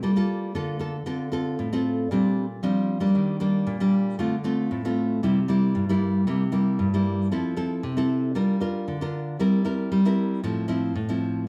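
Samba at 115 BPM in F major, playful and joyful, with a solo nylon-string guitar, fingerpicked, full-bodied and up front, moving through chords from Gm9 to a closing Fmaj7/A in a short cut from a longer piece, bathed in a wet large studio reverb and recorded live in one room.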